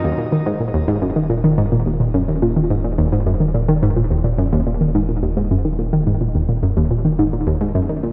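A bright, detuned analog pluck riff with chorus, delay and shimmer reverb sits up front under a filter sweep in this hypnotic, mysterious excerpt of sequencer-driven ambient space music, grounded by a deep, dark, sustained analog bass, while a ringing, fingerpicked concert harp plays arpeggios with delay and shimmer reverb in the background until 2.2 s, the dreamy mix soaked in lush hall reverb.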